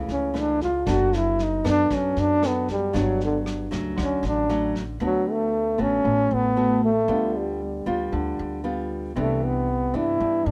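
A small, fingerpicked nylon-string guitar and a woody, thumpy upright bass played pizzicato open this sunny, romantic bossa nova excerpt in a straight 4/4. A trombone up front joins them almost at once. The trombone carries the melody as a jazz-style solo through the first 5.0 seconds, and its soft attack, light vibrato and scooped notes give it a tender, singing quality. Beneath it, a vintage brush kit sits mid-forward with a punchy kick, rim clicks, a medium-tuned snare and a rolled-off top, then drops out at 4.8 seconds. The harmony moves from a rootless F#m7 through Gmaj7 and Dmaj7, and the second half settles on D6 and G7/D before a closing Cmaj9, all heard in an intimate, dry room with little reverb.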